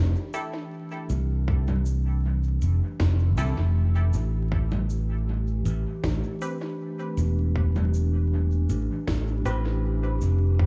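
A bright, growly fingered electric bass sits up front in this hazy, meditative ambient dub excerpt at 79 BPM in A minor, moving from Fmaj9 to a third-less A7 beneath a warbling, lo-fi tape-like pad with chorus and 12-bit grit, muted filtered chord stabs soaked in dub echo, an overdriven shaker, conga and woody snare kit, and a tight electronic kick that joins in the background at 1.5 seconds, all wrapped in an echo-heavy mix with vinyl crackle.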